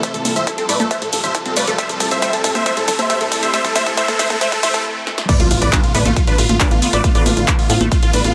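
Bathed in a moderate, lush hall reverb, this bittersweet, driving uplifting trance excerpt builds with drum fills from a punchy analog drum machine (congas, crash, handclaps, hi-hat, shaker and snare) over a layered electronic kick, a tight, ring-modulated sequencer bass, a squelchy, resonant liquid acid bass arpeggiating in the background through phaser, chorus and dub echo, and a very quiet, catchy plucky unison lead with vibrato, all led from the start by a huge, euphoric, detuned supersaw lead soaring up front with phaser, tape colour, dub echo and sidechain pumping, while a riser climbs beneath; after a brief stop at 4.8 seconds, the drop lands at 5.3 seconds with an impact.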